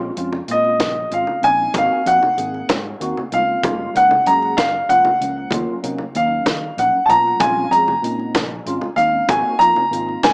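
A boxy, up-front grand piano carries the melody and solos high in its range from 0.5 seconds, sitting clearly above the band in this driving, slick piece of electric jazz fusion. Cut from a longer piece, it moves at 64 BPM in dotted quarters in 6/8 with a straight feel, in Bb minor, over the chords Bbm7, Ab9, Gbmaj7 and Ebm7. A bright, clean tine electric piano with ensemble chorus comps underneath from the start, alongside a dark, round, foam-muted fingered electric bass with an amped tone. At 0.2 seconds a tight funk drum kit joins with hi-hat, a tight kick and a high-tuned snare in a natural small-room sound, together with ringing, medium-tuned congas played with hard hands. The whole mix sits in a moderate club reverb and comes across with a small-speaker character.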